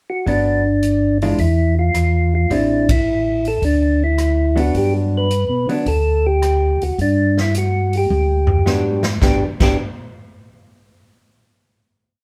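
A percussive tonewheel organ carries the melody in this short soul jazz organ trio piece, its round, dark tone shaped by third-harmonic percussion and a slow rotary speaker as it works through song-like motifs from a brief pickup. A second, mellow tonewheel organ holds down a two-feel bass line with chorus vibrato and slow rotary, while a vintage hollow-body electric guitar, clean, picked and compressed, adds syncopated comping in three- and four-note chord shapes. The swinging big-band drum kit keeps time on the hi-hat with sticks, its medium-tuned snare and punchy kick sounding airy and polished. The mood is soulful and swinging, with a band accent at 2.8 seconds, a drum fill from 8.1 seconds, and a final chord that rings out from 9.2 seconds. The group is heard from further back in a room with moderate studio reverb.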